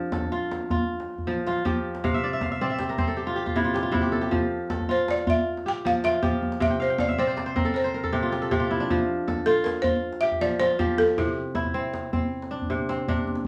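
Bright, ringing fingerpicked kora arpeggios open this hypnotic West African string and xylophone fragment at 105 BPM in a straight 12/8 in F major, adding crisp fills from 2.0 and 6.7 seconds over a deep, soft-handed djembe, while a woody, buzzing balafon played with rubber mallets carries the melody up front from 4.9 seconds, over chords moving between F and C in a studio room with moderate reverb.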